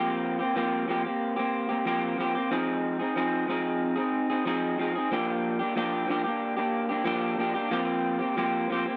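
A lone electric guitar, played through a small old amp, opens this nine-second indie pop excerpt at 92 BPM in F dorian, its slightly broken-up, lo-fi tone sitting up front in a dry, close 1970s-style studio sound. Fingered between F3 and Ab4, it moves from C7sus4 over F through Fm7 and Gm7 over F, with analog chorus and a warbly pitch drift giving the straight 4/4 feel a lonely, hazy cast.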